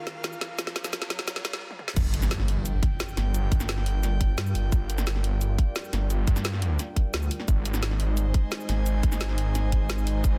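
A driving 174 BPM straight 4/4 pulse anchors this aggressive, dark technical drum and bass excerpt in G phrygian, where an electronic riser and drum fill build over an airy, breathy pad before a brief stop at 1.6 seconds gives way to a drop at 2.0 seconds, bringing in an impact, a tight up-front kick, a thick saturated detuned saw bass with sidechain pumping, and then a deep, warbling, vintage-toned ambient pad in the background from 2.9 seconds, all driven by woody snare, bright hats, shaker, toms and crash over Gm7 shifting to Ab in a dense, heavily limited modern master.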